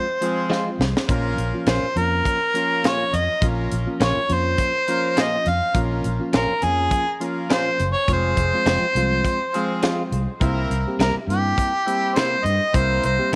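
Light reverb and a studio ambience frame this mournful, soulful straight-eighth blues clip, moving at 103 BPM in 4/4 with a 55% sixteenth-note swing. Up front, an overdriven harmonica carries the melody as a jazz-style solo, with gentle vibrato and scooped notes over harmony that moves from Fm to Bbm, returns to Fm at 8.1 seconds and turns to C7. A reedy, direct electric piano supplies accompaniment beneath it, while a bright horn section holds sustained chords with octave doubling and a faint shimmer of vibrato. The tight funk drum kit sounds acoustic and natural, with a high-tuned snare, kick and hi-hat, and plays a fill from 0.5 seconds. A dark, round, foam-muted fingered bass enters at 0.8 seconds, and a clean, compressed guitar, recorded direct, sits in the background with picked stabs colored by subtle chorus and tape echo.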